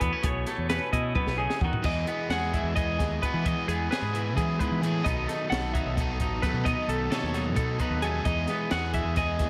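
Math rock and Midwest emo in a straight 7/8, wistful and intricate, this excerpt opens with two clean, twangy twelve-string electric guitars, one playing picked accompaniment and the other picking high arpeggios through spring reverb and analog delay, over a growling overdriven fingered bass and a compact cocktail drum kit with a high-tuned snare and punchy kick. After a drum fill from 1.2 to 1.8 seconds, a crunchy, double-tracked overdriven guitar riff enters at 1.8 seconds as the harmony moves from B9sus4 to Emaj9 and B9. The drums sound dark and smooth in a small room, and a light reverb surrounds the mix.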